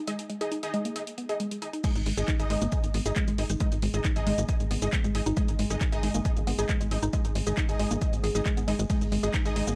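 Driving peak-time techno with a relentless mood, this passage is cut from a longer piece and opens on a woody, wave-folded pluck riff with a dark, percussive edge, treated with chorus, tape echo and sidechain pumping. Aggressive rave stabs, thick with detuned unison sawtooth and a sub octave, cut through brightly under filter sweeps, chorus, phaser, reverb and tape echo, while an analog drum machine supplies handclaps, hi-hat, shaker, ride and crash cymbal. The drop lands at 1.8 seconds with a punchy electronic kick, and a tight sequencer bass follows at 2.0 seconds, its sawtooth and square-wave tone gritted up by ring modulation, tube saturation and sidechain pumping. At 3.1 seconds a very quiet, evolving analog drone slips underneath with a slow attack and pulse-width modulation. The sound is dry and gritty, like a hardware recording set in digital ambience.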